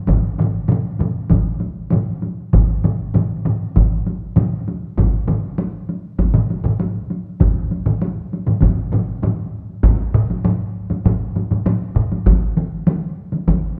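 Japanese traditional taiko drum ensemble music at 99 BPM in a straight 4/4, ceremonial and driving, pairs a compressed, saturated solo taiko struck with hard sticks against three taiko ensemble parts, two up front (one hard-sticked, one heavy-sticked in a live room) and one heavy-sticked group set in the background, all heard in a dark production with a wet recital-hall reverb, as a cut from a longer piece that shifts to a new section at 9.8 seconds, with one up-front ensemble dropping out at 12.1 seconds.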